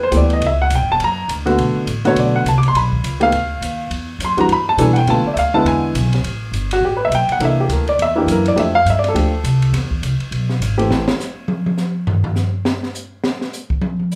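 An intimate baby grand piano with audible action noise and short sustain takes the lead in this moody, swinging jazz piano trio excerpt in E minor at 206 BPM, backed by a woody, thumpy upright bass with gut strings and an open drum kit with dark cymbals, a high-tuned snare and a boomy kick, all sounding live in one small room with light reverb, until piano and bass stop at 11.1 seconds and the drums carry a short solo to 14.2 seconds.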